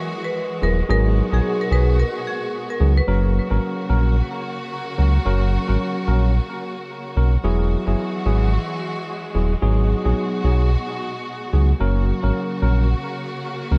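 Afrobeats at 110 BPM in 4/4 with a swung sixteenth-note feel, this sunny, joyful excerpt sits in F# mixolydian and moves through Eadd9, G#m7 and F# chords. A dark, lush studio string section opens at 0.0 seconds with sustained bowed chords, its ensemble sound expressive with vibrato and a smooth top. A marimba with medium hard mallets carries a brief mid-forward melody until 3.1 seconds, soaked in dub echo. A worn, slightly out-of-tune tine electric piano, clean through a combo amp and also treated with dub echo, supplies accompaniment from 0.6 seconds onward. Underneath, a deep, full sine sub bass with an octave sits up front with a fast attack and a mellow, sustained tone. The small room ambience and echo-heavy mix give the short excerpt a spacious, dubby glow.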